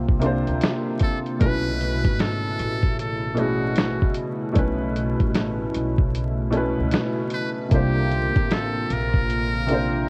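A nostalgic, melancholic lo-fi hip hop excerpt in B dorian at 76 BPM opens with a soft, felt-muted upright piano up front, a lush, detuned pad with chorus in the background, and a woody pizzicato upright bass. A compressed, pitched-down sampler-style drum kit with a thumpy kick, medium-tuned snare and hi-hat comes in at 0.1 s on a swung 16th feel. At 1.0 s a trumpet with a metal mute takes the solo melody, buzzy and breathy with light vibrato, over chords moving between C9sus4 and B9sus4, and the track sits in a haze of worn, warbling cassette tape, vinyl crackle, pitch drift and light reverb.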